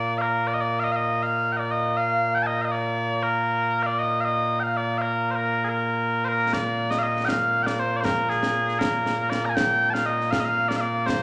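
A wet, large studio reverb surrounds this recording, a stretch cut from a longer piece of proud, stirring Scottish traditional pipe music. Mellow small bagpipes carry the melody throughout in a sweet, continuous tone with vibrato, placed up front and playing solo for the opening section. The tune moves at 79 beats per minute in a straight 6/8, set in Bb mixolydian with the pipes tuned to A4 = 436 Hz and spanning Bb2 to Bb5. At 6.5 seconds the section repeats and a concert snare and bass drum join in, acoustic and sounding as if in a small room, with bright cymbals. The drums sit well below the pipes in the mix, backing the restated melody until the end at 11.2 seconds.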